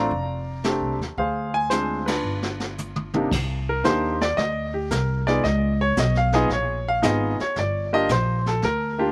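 Playful and sophisticated, this short jazz piano trio passage swings at 113 BPM in 4/4 over chords such as Bbmaj9, G7 and Db9, heard in a dry, open-air setting. A clear, polished baby grand piano carries the melody up front with a slapback echo, over a woody pizzicato upright bass and a brushed drum kit with dark cymbals, a high-tuned snare and a boomy kick. The band hits an accent at 2.0 seconds, the drums take a fill from 2.2 seconds, and at 3.3 seconds the piano launches into a solo.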